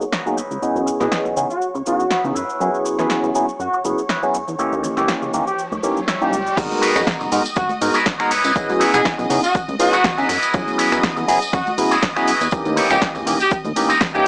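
Filtered disco house with a nostalgic, groovy swing, where a barky, lightly overdriven tine electric piano sits up front over smooth background violins, a twangy envelope-filtered guitar riff, a plucky analog bass, a distant horn melody and punchy analog drum machine with tambourine and congas, all under a filter sweep and sidechain pumping until a background riser gives way to the drop at 6.6 seconds, when an overdriven electronic kick enters, all in a dry, gritty hardware sound from a small speaker.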